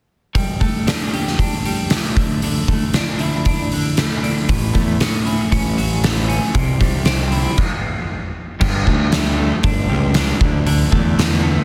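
A dense, heavily limited mix with light reverb and small-room ambience frames this restless, anthemic snippet of quiet-loud alternative rock in straight 4/4. A clean, twangy twelve-string electric guitar plays tremolo-laden arpeggios over Gsus2, Dsus2, A6 and C, while an oversized, low-tuned acoustic drum kit sits up front with a gritty, saturated sound, a fat snare, punchy kick, crash and hi-hat in a bright stone room. A growly, overdriven fuzz bass joins at 4.5 seconds, and after a stop from 7.6 to 8.6 seconds the band returns to the Gsus2 and Dsus2 chords.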